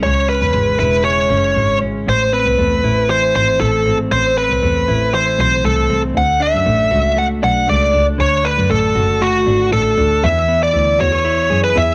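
A straight, even 4/4 pulse carries this breezy, youthful stretch of jangly indie pop, cut from a longer piece. Up front, a bluesy overdriven electric guitar plays the picked, distorted melody with cassette-tape coloring. Beneath it, a clean electric guitar, recorded direct and compressed, picks warm arpeggios bathed in spring reverb and the same tape character. A single bowed double bass supplies a dark low line with expressive vibrato, portamento and a smooth top. The harmony moves through C#m, Am and D before shifting to E for a new section at 10.2 seconds, all heard in a modest small room on a homespun cassette recording.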